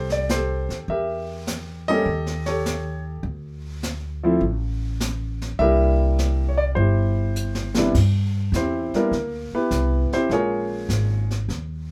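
Swinging and relaxed, this short jazz piano trio excerpt, played live in one room with moderate studio ambience, sets an up-front baby grand piano with short sustain over woody, thumpy pizzicato upright bass and a brushed drum kit with dark cymbals and a boomy kick; a drum fill at 7.4 seconds leads into a piano solo from 7.9 seconds.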